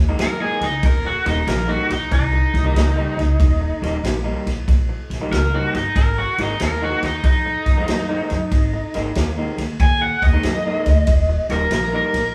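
A swung 4/4 shuffle drives this swaggering, soulful electric blues fragment, with a punchy big-band drum kit of kick, medium-tuned snare and ride and a woody, thumpy pizzicato upright bass carrying the groove under a dark, lo-fi, slightly broken-up riff from a guitar through a small old amp, while an up-front, bright garage guitar with overdrive and spring reverb plays a picked solo across the full 12.3 seconds over Absus2 and Eb7 chords, captured as a band playing live in one room with light reverb.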